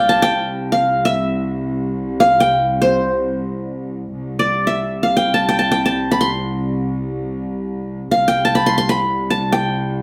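Arabic maqam ensemble music in free time, centered on C maqam ajam, with a stately, warm mood in this short passage cut from a longer piece. A qanun carries the melody between C5 and C6 for the full 10 seconds, its fingerpicked triple strings giving an acoustic, bright-edged sound placed up front and touched with plate reverb. Beneath it, a rich chamber cello section holds a bowed drone on C2, smooth and even with vibrato, also up front though sitting lower in level than the qanun. The phrase material returns at 4.1 seconds, restating the opening idea. The studio room is wet, with a short reverb tail and a sense of being heard from further back in the space.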